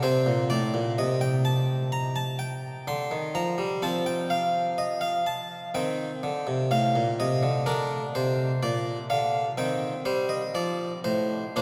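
Flexing freely in rubato over a 4/4 metre, this radiant, serene excerpt from a baroque-style suite movement features a solo harpsichord in the French style, its bright, airy, plucked tone on a single set of strings placed up front and ranging from A2 to C6, tuned slightly low at A4 = 437 Hz, and moving through Cm7, F5, Am7b5 and Bb toward Cm/Eb and F, all bathed in a cathedral reverb that lingers for about 5.0 seconds.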